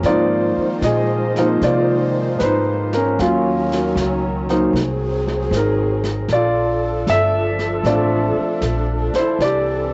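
A late-night, intimate jazz ballad opens with all four parts together: a grand piano up front playing accompaniment, muted strings holding sustained chords, an upright bass, and a brush kit, at 77 BPM in 4/4 with a swung eighth-note feel. The piano is natural and close, carrying the chords from Ab6 through Ebm7 and Ab9 to Bbmaj7, arriving on C69 at 9.4 seconds. Behind it, the con sordino string section sounds dark and veiled, bowed with vibrato, soft attacks and a smooth top, given depth by plate reverb and a cassette-tape tint it shares with the piano. The pizzicato upright bass is woody and thumpy, with a touch of tube saturation, while the brushes on snare and hi-hat sit low in the balance, airy and polished. A small-room reverb and a homemade cassette sound with a dulled top end give this short cut from a longer piece a hushed, private character.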